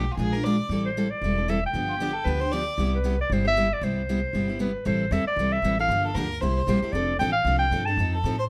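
A fast swung 4/4 at 231 BPM drives this short, playful cut from a longer acoustic string swing piece in C major, tuned slightly sharp of standard pitch. Upright bass plucks woody, thumpy gut-string notes up front, while a picked steel-string acoustic guitar supplies bright, fresh-stringed accompaniment with audible finger squeak. A breathy clarinet carries the lively melody from 0.9 seconds, clear and present with light vibrato and a touch of plate reverb. A smooth, bowed violin adds an even second line with vibrato in two short passages, dropping out at 2.9 seconds and returning at 6.0 seconds. The harmony moves through jazzy seventh chords such as Am7, G7 and Cmaj7 before settling toward F6 and F7. A moderate small-room ambience and close, detailed microphones give the ensemble an intimate, lively sound.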